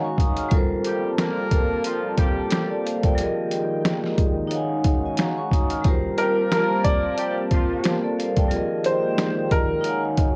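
A ringing, metallic vibraphone with slow motor vibrato and a deep, detuned analog pad with chorus open this dark, reflective boom-bap hip-hop excerpt in G phrygian at 90 BPM, before muffled, pitched-down sampler-style drums with a thumpy kick and lightly swung 16ths enter at 0.2 s, vintage jazz-style horn stabs with analog delay arrive at 0.9 s, and an intimate, woody upright piano melody with audible action noise joins at 6.2 s over minor-eleventh chords, all in a lightly reverberant home cassette recording.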